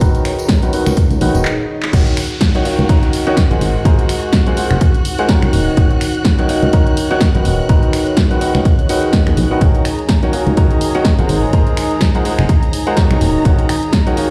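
A clear baby grand piano sits up front with a riff, its tone softened by a low-pass filter, trailed by delay and pumping against the sidechain. This bittersweet, soulful piano house cut in Eb minor runs at 125 BPM in 4/4 with a light 16th-note swing, moving through Bmaj7/D#, Ebm7 and Ab13. A round, mellow FM bass with a fast, decaying attack and tube saturation holds the low end, while an overdriven, layered electronic kick punches hard up front. A tape-warm analog drum machine supplies snare, hi-hat, handclaps, finger snaps and crash, and a background tambourine plays only in the opening 1.4 seconds. Behind them, a veiled, con sordino violin section holds lush bowed chords with vintage 12-bit sampler grit, and a deep, moody detuned pad with chorus and built-in reverb adds a sustained layer. After a swell, a brief stop with a drum fill and a band accent, the drop lands at 1.9 seconds, with a background swell and downlifter running until 5.8 seconds, all set in a stone room with light reverb.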